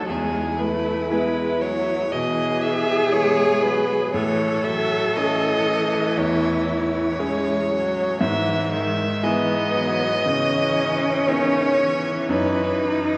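Rubato phrasing stretches a slow 4/4 pulse of about 59 BPM in this fragile, longing neoclassical fragment for piano and strings in C# minor, cut from a longer piece. A single bowed violin carries the melody up front with vibrato, its tone focused and its top smooth, while a lone cello sings a second line from farther back with a rich, centred tone. The viola fills in accompaniment with soft attacks, expressive portamento and close, vibrant warmth, beside a clear, intimate baby grand whose action noise can be heard beneath its natural sound. All four parts play together throughout the 13.2 seconds, moving through E, Amaj7 and C#m7/G# chords. The performance sits in a church or concert hall, and a long, wet reverb lets each phrase hang in the air.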